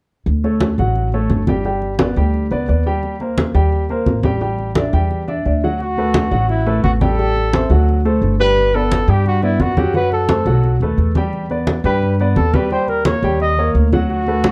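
A brisk, straight 4/4 pulse at 174 BPM opens this sunny, lively Afro-Cuban jazz piece in D major, with low-tuned, ringing congas played with soft hands, their compressed, saturated sound sitting beside a woody, thumpy pizzicato upright bass that comes up front from 0.3 seconds. A natural-sounding baby grand piano fills in the harmony just after, moving through rich chords such as Dmaj7, Eb6 and A7sus4 in the opening stretch. At 5.8 seconds a mellow trumpet takes the solo melody, soft in attack and distant and roomy in character, even as it stays prominent in the mix. The harmony grows busier under the trumpet, passing through D69, Gadd9, F#dim and B7b13 before landing on Eb7. A moderate studio reverb and a dark, warm production give the whole cut an intimate club glow, and all four parts carry on until the fragment ends at 14.5 seconds.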